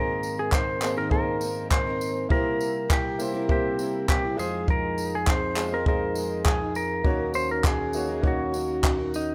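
A rough home demo mix with light reverb and a small room ambience gives this acoustic pop passage, cut from a longer piece, a carefree and heartfelt character at 101 BPM in a straight 4/4. Up front, a clean, twangy lap steel guitar carries the melody with a compressed slide tone and volume swells, while a compact cocktail drum kit enters at 0.2 seconds with a dry, punchy kick, handclaps and tambourine. A brilliant, woody upright piano with a vintage smoothness fills in the accompaniment alongside a double-tracked, picked steel-string acoustic guitar whose full-bodied jumbo tone sits in the background. Underneath, a soft, flute-like tonewheel organ holds sustained chords with audible key click through a slow rotary speaker. The harmony moves from Abadd9 to C7, then Fm7 and Ebm7 across the brief passage.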